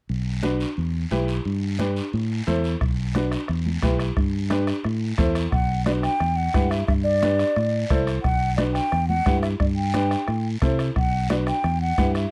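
An airy, hollow concert flute carries the melody up front from 5.5 s, its mellow, tongued lines shaded with vibrato in a fiery, passionate cumbia cut from a longer piece. It moves at a brisk 177 BPM in straight 4/4, tuned to A4 = 444 Hz, over a repeating Bm, Em, G, Am progression. A round, amped fingered electric bass sits prominently from the opening alongside a clear, woody upright piano that sounds worn and slightly detuned. Damped, high-tuned congas played with soft hands stay in the background, while a raspy guiro sounds distant, as if from a large room. A close, soft-beater bombo joins at 2.8 s, deepening the groove before the flute arrives in the second section, all captured as a dry, close 1970s-style studio recording.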